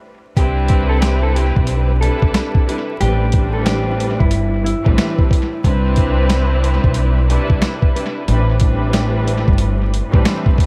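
An echo-heavy mix steeped in studio reverb and vinyl crackle frames this dark, tough boom-bap hip-hop fragment, cut from a longer piece and moving at 91 BPM in 4/4 with a swung sixteenth-note feel. After a brief pause, the sampler-style drum kit arrives at 0.4 seconds, up front, compressed and pitched down, with a thumpy kick, a medium-tuned snare and hi-hat carrying a gritty, tape-warmed edge. An upright bass sits beside it, plucked pizzicato with a woody tone in a low register, and drops out at 10.2 seconds. A rich studio string section plays a lush, bowed ensemble accompaniment with vibrato and a smooth top, colored by cassette tape, filtering and analog delay. Over this, a clean, fingered electric guitar with a dusky tone carries a short melody through filters and analog delay until 5.6 seconds, as the harmony alternates between Cmaj9 and Am11.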